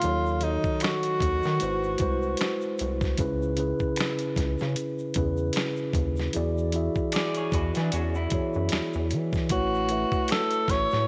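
A soulful, smooth neo-soul R&B groove at 76 BPM in A major opens with a breathy, whispered tenor saxophone playing scooped, vibrato-laden notes up front over a mellow tine electric piano, a rubbery, nasal square-wave bass, a gritty sampler-style drum kit with a thumpy kick, and a quiet egg shaker and finger snaps in the background, all set in a moderate echo chamber reverb with a swung sixteenth-note feel. The saxophone drops out after 2.8 seconds, and a slightly broken-up electric guitar through a small old amp adds a picked second line from 7.1 to 9.3 seconds. The saxophone returns at 9.5 seconds as the chords settle on A6 in this short cut from a longer piece.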